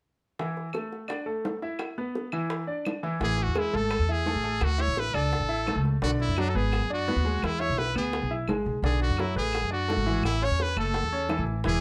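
A dark, warm production with light reverb frames this sunny excerpt of Cuban son and guajira at 170 BPM in A major: a bright, polished grand piano plays short-sustained arpeggios alongside tight, high-tuned bongos from the start, with woody claves joining in the background a moment later, and at 3.2 s a punchy, brilliant trumpet solo with vibrato and a thumpy, gut-string pizzicato upright bass come up front as the chords move through Bm and E7 to settle on A.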